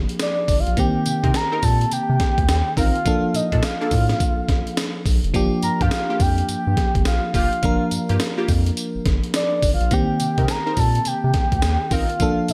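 New jack swing R&B with a bouncy, punchy feel, riding a swung sixteenth-note groove in this excerpt cut from a longer piece. A breakbeat sampler-style drum kit sits up front with a gritty, compressed sound, a thumpy kick, a high-tuned snare, hi-hat and tambourine, all coloured by gated reverb. Underneath, a round analog bass holds down the low end with a deep, dark tone, while a glassy FM electric piano with a bell-like attack and chorus fills out the accompaniment. A soft octave-layered synth lead carries the melody from the start, full and round with a sub octave, vibrato, tremolo and tape echo. From 1.2 seconds a funky polysynth comp adds detuned sawtooth stabs with a moving filter sweep, sitting lower in the mix, as the chords cycle through Gm7, Cm7 and Bbmaj7 inside a digital ambience.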